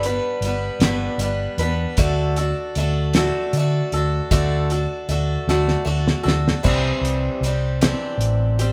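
Hopeful and nostalgic, this short excerpt of folk rock with a heartland rock lean moves at an unhurried 52 BPM in a straight 6/8, cut from a longer piece. A picked, swing-style acoustic guitar sits up front with a bright, boxy tone, carrying the accompaniment through the whole passage. Beneath it, a hollow-body short-scale electric bass, played with the fingers, gives a round, punchy and amped low end that also sits forward in the mix. The cloth-damped drum kit sounds dry and thuddy, with a fat snare, tight kick, dark cymbals and a rolled-off top across the kit. The harmony moves from G to D, and a drum fill from 5.5 to 6.7 seconds leads into a new section that lands on Cadd9. The band plays live together in one room, with light reverb giving the performance a close, natural feel.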